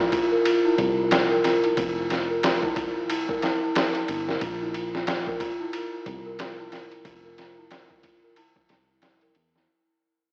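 Soaked in a lush hall reverb and given an AM radio tone, this dreamy, smoky trip hop fragment at 91 BPM fades out across its full 9.7 seconds, cut from a longer piece. An up-front large celesta, bell-like and vintage with a ringing, sweet tone shaped by a low-pass filter and analog delay, plays arpeggios over Bbsus2, Fsus4 and C7, while a dark, round fingered electric bass with tube saturation sits low beneath it. Gritty, pitched-down sampler-style drums enter at 0.1 seconds with a thumpy kick, medium-tuned snare and ride cymbal, swung and tape-colored for a cinematic feel.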